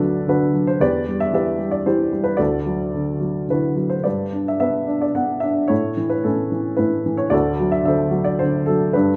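A dark, woody upright piano plays alone and up front, its mellow tone and short sustain giving this brief classical fragment, cut from a longer piece, a warm, relaxed feel. The lyrical solo moves in 3/4 at 111 BPM with a rubato sway, ranging from D2 to F#5 over a progression from D through Em, Dadd9, G and A before settling on D7 at 7.3 seconds. A moderate recital hall reverb lends a gentle sense of space around the instrument.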